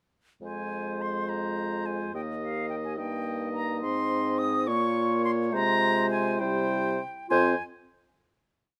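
Restless and stormy, this quick classical-period movement for wind quintet runs in 6/8 at 70 BPM (dotted quarters) in F minor, its chords passing from Fm through Eb, Ab and Bbm to C before settling on a closing F5 chord at 7.3 seconds. An airy concert flute with vibrato and a soft attack carries the melody up front, while a clear, distant oboe, a mellow, roomy clarinet and a French horn with a smooth top and light vibrato trace independent inner lines and sustained chords. A present bassoon anchors the bottom with sustained bass and passing notes, and the quintet is captured by close, detailed microphones in light reverb.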